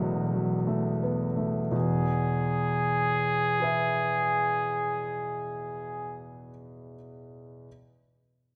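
Serene and lyrical, this brief romantic classical passage for trumpet and grand piano moves in a rubato 6/8 at 32 BPM in E major. The dark, mellow piano opens alone with long sustain over a slowing B7/E chord with its third omitted. Then the warm, vintage-toned solo trumpet enters up front on G#4 at 1.7 s as the harmony settles on E, all bathed in the wet reverb of a scoring stage.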